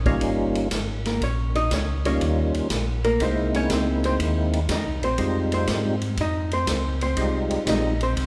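Soul jazz organ trio excerpt at 121 BPM in a bluesy, soulful swing, where a mellow, round tonewheel organ plays the bass up front through a slow rotary speaker, a fat, percussive second organ with key click and chorus vibrato carries the melody, a dark, clean, picked hollow-body archtop guitar comps over Eb9, C7alt and Fm7 changes, and a distant, boomy, rolled-off drum kit swings on hi-hat, ride, snare and kick, all set in a recital hall reverb.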